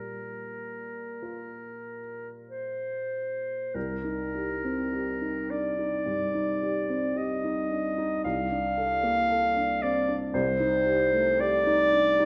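Heard through a moderate recital hall reverb with a decay of about 1.4 seconds, this short excerpt from a longer piece is a pastoral, dreamy impressionist duo for clarinet and baby grand piano. The tempo drifts in a rubato 4/4 between 46 and 58 BPM, tuned to A4 = 441 Hz. Up front yet oddly distant, the clarinet carries the melody between Bb4 and F5 in a warm classical voice with a soft attack and a roomy air. The piano accompanies from C2 to Bb4 with a dark, mellow, worn tone and long sustain, sitting slightly beneath the clarinet. Opening on Bb5, the harmony moves into a new passage at 3.8 seconds on Cm7, then passes through Bbmaj9/C at 8.2 seconds before settling on Cm69.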